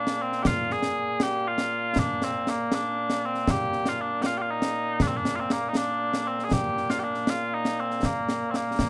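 Proud and stirring, this short cut from a longer piece of Scottish pipe music moves in a straight 6/8 at 79 BPM in Bb mixolydian. Mellow small bagpipes carry the melody up front from the start, their sweet, continuous tone shaded with vibrato, while concert snare drum and concert bass drum enter at 0.1 seconds, close and dry with dark cymbals. Light reverb and detailed close miking frame the roughly nine seconds of playing.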